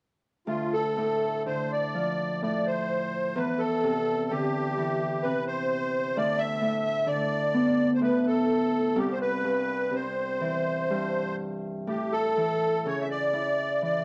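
Rubato and uneven, the pulse drifts through a slow 3/4 at about 63 BPM in this Celtic slow air, cut from a longer piece and set in D dorian with a longing, mournful mood. From 0.5 s to 14.0 s, a reedy musette accordion sits up front and carries the melody between F4 and E5, its musette tuning giving the line a shimmering, airy edge. A fingerpicked Celtic harp, also up front, plays the accompaniment in the low and middle register with a mellow, ringing acoustic tone. The harmony moves from Dm through Cadd9/E, a rootless Cmaj13/D and C before settling on A. A moderate recital-hall reverb surrounds both players, and the recording carries the worn character of old cassette tape with a warbly pitch drift.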